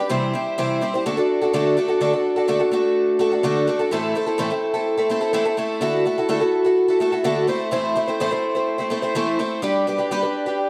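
A dark, warm production with light reverb frames this brief rock excerpt, cut from a longer piece. A picked twelve-string acoustic guitar carries it alone from 0.0 to 10.7 seconds, sitting up front with a boxy, parlour-sized body and a shimmering, octave-doubled ring, with audible finger squeak and a touch of slapback echo. In A dorian at 126 BPM in a straight 4/4, the guitar moves from C to D before settling into a longer passage at 3.9 seconds that cycles through Am, Dadd9, Am and G. Its range spans A2 to C5. The mood is dusty and wistful, like a road-worn memory.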